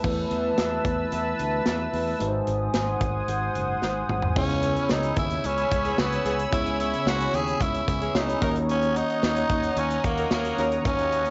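A dramatic, urgent slice of 1980s-style pop opens at 111 BPM with a tine electric piano providing accompaniment, a detuned sawtooth pad sustaining up front with chorus, a fretless electric bass bathed in lush chorus, and a studio drum kit with a punchy kick, medium-tuned snare, hi-hat, tambourine and a rolled-off top. The harmony moves from Esus4 to G#7, and a drum fill from 3.8 s leads into the next section. At 4.4 s a breathy tenor saxophone takes the melody in C# dorian, raspy and gritty with vibrato, sitting up front over C#m7 and then D#m7. A warm pop horn section adds punchy stabs from 5.8 s, kept in the background with a light vibrato. The drums and saxophone carry a cassette-tape grit, and a spring reverb gives the home recording a dull, muffled sheen on this short cut from a longer piece.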